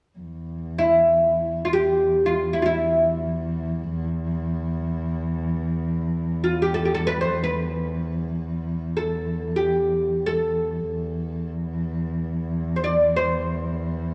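An up-front oud carries the melody, its plectrum-plucked double strings giving a woody, deep voice to a fretless line that ranges from E4 to D5. This is a melancholic, longing piece of Arabic maqam ensemble music, played in free time. Beneath it, a single bowed cello holds a low E2 drone from 0.2 seconds, dark and close, with vibrato and a sul tasto tone that sits quieter than the oud, which enters at 0.8 seconds. The pair is set in a moderate scoring-stage reverb, while the whole recording carries the worn character of old cassette tape, with a warbly pitch drift. The passage is cut from a longer piece and stays in a single section through to 14.1 seconds.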